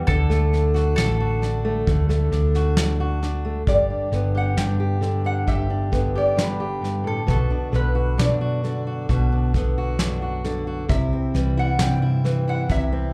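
A slow, straight 4/4 at 66 BPM carries this nostalgic acoustic folk piece in G major, with a soft brush kit of punchy kick and medium-tuned snare and a dark, round hollow-body electric bass sitting up front. Over a fingerpicked steel-string acoustic guitar, a lap resonator guitar played with slide and fingerpicks sings a metallic, nasal melody, while a bright, double-strung mandolin adds a second line only until 3.2 seconds. Slapback echo colours the resonator, mandolin and acoustic guitar, and the performance is heard as a live gig through a club PA with light reverb, its chords moving from D to G, B minor and C.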